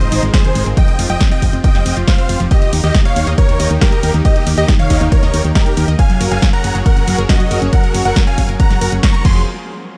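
Soaring and emotional, this uplifting trance drop at 138 BPM in 4/4 is cut from a longer piece and rides chords moving from Ab6 through Fsus2, Eb and Gbadd9 to Fm. A huge, euphoric supersaw lead carries the melody with delay and sidechain pumping, over a very quiet, catchy square-wave second line and a thick, warbling vintage pad with chorus in the background. A detuned unison pluck plays arpeggios with a filter sweep and delay, while a round, dark FM bass drives beneath. A punchy analog drum machine adds snare, hi-hat, ride and crash, and a dry electronic kick sits up front from 0.3 s, all in a dark, warm production that ends on a band accent at 9.0 s.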